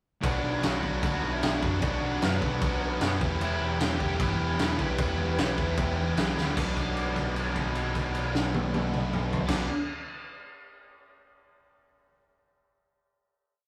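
Punk rock at 152 BPM in B minor, angry and aggressive, this short, complete piece opens at 0.2 s with a loose, up-front acoustic drum kit (fat snare, punchy kick, rolled-off top) driving a fast punk groove under an overdriven picked bass pounding eighth notes, while three guitars sit behind them: a semi-hollow guitar and a tight, bright distorted guitar hammering eighth-note barre chords and a thick, double-tracked fuzz guitar ringing out chords. A lead guitar through a small cranked amp weaves a motif-based, song-like melody partly doubled in octaves over the Bm to Em riff. After a drum fill at 6.4 s, the band lands on a held final B minor chord from 6.6 s, all captured in a rough rehearsal-room sound with moderate reverb.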